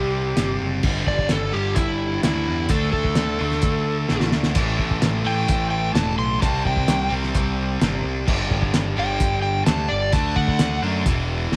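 A small room with light reverb gives this brooding, swaggering classic rock excerpt an intimate feel in a straight 4/4. Up front, an overdriven slide guitar carries the lead melody from the start, played with the fingers and a slide and ranging from E4 to C6 until it drops out at 10.8 seconds. Beneath it, a sludgy, dark distorted guitar and a crunchy, bright guitar set back in the mix both play a picked riff, joined by a growling electric bass with a bright, amped, overdriven edge. At 0.4 seconds, a cloth-damped, thuddy, lo-fi drum kit enters with a fat snare, tight kick, dark cymbals and a saturated, rolled-off top, and it breaks into a fill at 4.1 seconds. The power-chord progression moves through C5, G5, D5 and A5 before closing on E5.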